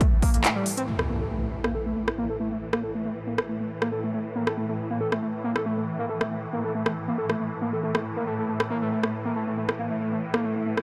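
Lightly reverberant and dark, this hypnotic cut of driving peak-time techno sets an overdriven, up-front drum kit of handclaps, rim clicks and smooth, pumping hi-hats under a screaming, gritty, guitar-like synth lead riff that carries sidechain pumping, digital delay and a filter sweep from 0.9 s, all over a swarming, detuned drone that warbles through phaser, built-in reverb and its own pumping, while an electronic impact strikes from 0.9 to 2.6 s.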